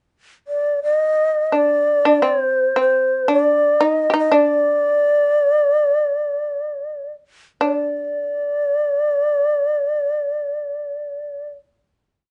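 A dark production with light reverb frames this calm, austere piece of Japanese chamber music in rubato 2/4 at 54 to 88 BPM, where an airy, mellow shakuhachi opens at 0.5 seconds with a tongued modal melody full of vibrato and ornaments, a bright, buzzing plectrum-plucked shamisen joins at 1.5 seconds on the same line with its own ornaments, and the two slow down before settling on a long final note from 7.6 seconds.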